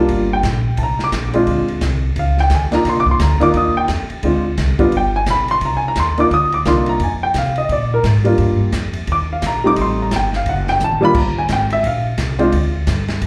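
A baby grand piano and a pizzicato upright bass begin together at the top of this cool, moody small-group jazz piece, with the drum kit joining an instant later. It swings in 4/4 at 174 BPM in C minor, a brisk bop feel cut from a longer performance. The piano sits up front as accompaniment, intimate and natural, with audible action noise, short sustain and a slapback echo. The gut-string bass is woody and thumpy, also forward in the mix. The drums sit lower, with dark cymbals, a medium-tuned snare, a boomy kick and a rolled-off top, and they break into a brief fill at 10.8 seconds. The harmony moves through rich chords such as Cm11, Ebmaj9 and Am7b5, and everything is heard through a club PA in a moderate room reverb, as at a live gig, with the piano dropping out at 12.8 seconds just before the close.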